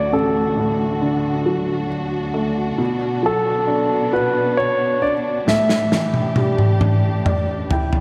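A concert grand piano carries the melody between A4 and E5, its intimate, polished tone marked by audible action noise and a slapback echo, in this heartfelt, swaying six-eight pop ballad in D major at 45 BPM, an excerpt cut from a longer piece. A soft, felt-muted upright piano plays a mellow accompaniment while a lush symphonic string section holds bowed chords with vibrato, moving from D to Bm at 2.8 seconds and to A7sus4 at 5.5 seconds. At 5.5 seconds an acoustic country drum kit enters with a fill on snare and toms, joined by a felt piano fill at 6.8 seconds, all set in a concert hall reverb that gives a big arena sound.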